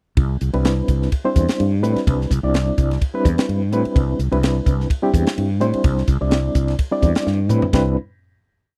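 A crisp, high-tuned snare and punchy kick drive a polished fusion ride groove on the acoustic drum kit, which sits up front and closes the groove with a fill at 7.3 seconds. A dark, round fretless electric bass plays a syncopated riff beneath a reedy electric piano that adds syncopated drop-2 chord stabs with a fast tremolo over a Cmaj9 harmony. The slick, soaring electric jazz fusion groove is captured in a dry, close 1970s-style studio sound and settles onto a final chord at 7.7 seconds.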